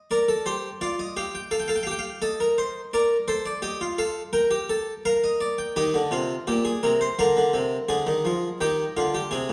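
A plucked, Italian-style harpsichord sits up front throughout this brief passage of a baroque-style three-part fugue, its brilliant tone thickened by octave strings. The mood is lively yet stately, moving at 85 BPM in a straight 4/4, with the solo instrument spanning from Bb2 up to G5. The harmony centres on Bb, passing through F7 and back to Bb before turning to Eb, then Bb7, and settling on Eb again near 8.6 seconds. The harpsichord rings out in a reverberant recital hall with a 1.4-second decay, giving the performance the spacious air of a church or concert hall. Tuned to A4 = 439 Hz, the 9.5-second fragment is cut from a longer piece and plays as a single section.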